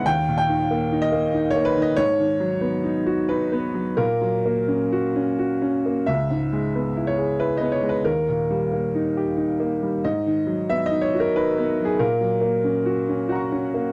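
Rubato phrasing stretches a 3/4 pulse at about 92 BPM in this short neoclassical minimalist piano piece, cut from a longer work. A solo baby grand carries the whole of its 13.9 seconds in G# minor, tuned slightly high to A4 = 441 Hz, with a reflective, melancholic mood. The piano sounds clear and somewhat boxy, sitting up front with a long sustain that lets each harmony ring across a range from C#2 to C#6. The harmony moves through D#, G#m7 and F#/A#, then the phrase begins again at 6.1 seconds on C#m7 before returning through D#, G#m7 and F#/A#. The sound is dry and close, like a 1970s studio recording with little room reverb.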